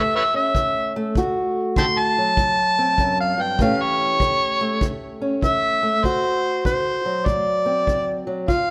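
An overdriven, amplified harmonica leads this short cut of swaggering, gritty acoustic country blues at 98 BPM with a swung feel, playing a jazz-style solo up front with vibrato, scooped notes, tongue slaps and a soft attack. Beneath it, a fingerpicked old ladder-braced acoustic guitar with old strings gives a dark, woody, boxy accompaniment over A7 and D7 chords. A tight, natural kick drum enters at 0.5 seconds, and a moderate recital hall reverb surrounds the performance.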